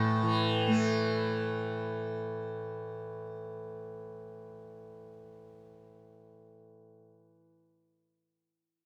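Indian classical drone music, serene and devotional, moving at 129 BPM in 3/4 with a straight feel. A lone acoustic tanpura sustains its drone from 0.0 to 7.4 seconds, softly plucked and sitting up front, its bright, buzzing tone shimmering between A2 and A3. A moderate plate reverb gives the rough home-demo sound a gentle halo, and the recording is cut from a longer piece.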